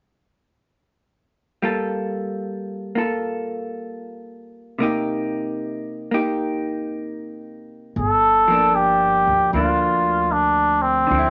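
Intimate and smoky, this swung jazz ballad fragment opens with a dark, clean, up-front hollow-body electric guitar comping alone over Gm9 and Cm7 from 1.6 seconds, until at 8.0 seconds a soft, veiled cup-muted trumpet takes the melody with light vibrato while a woody pizzicato upright bass joins underneath, all in a lightly reverberant, mellow room.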